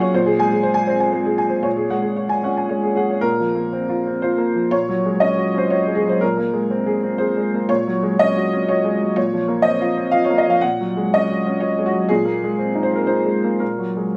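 A worn, woody, slightly detuned upright piano plays alone and up front through this reflective, melancholic neoclassical minimalist piece, moving in a rubato 3/4 at around 113-124 BPM as its harmonies cycle between Ab, Gbadd9, Bbsus2 and Bbmadd9 over a steady Bb bass, with long sustain blooming into a moderate studio reverb across this 14.2-second cut from a longer work.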